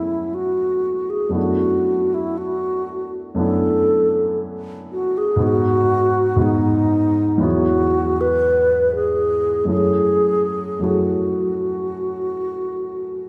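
In a free, rubato 4/4 at 51-61 BPM, this mysterious, hazy impressionist classical fragment pairs an airy, hollow alto flute carrying the tongued, vibrato melody with lifted highs, over a smooth, vintage-toned grand piano accompaniment moving through lush extended chords from F#m11 to F#m9, both parts up front yet bathed in a wet, two-second stage reverb that places the listener further back in the room.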